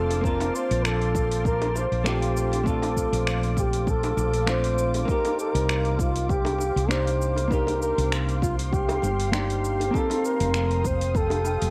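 A lightly swung 16th-note groove in 4/4 sets a smooth, relaxed sunset chillout mood in this short cut from a longer piece. An overdriven electronic kick, deep and layered, joins at 0.2 seconds, while a deep house kit of cabasa, finger snaps and metallic hi-hats, also overdriven and re-recorded in a large room, enters with tight, high-tuned bongos played with soft hands in the background. A growly, punchy fretless electric bass with tube saturation sits up front beneath a dark, clean hollow-body jazz guitar that plays compressed, fingered accompaniment. Above them, a bucket-muted trumpet carries the melody in a veiled, close-miked jazz style with vibrato and delay, set against an ethereal ambient pad with octave-up shimmer, chorus, built-in reverb and vintage 12-bit sampler grit. The harmony drifts from Bbmaj9 to Cm9 and on to F9sus4 at 9.9 seconds, and the whole mix wears light reverb and the warbling pitch drift of worn cassette tape.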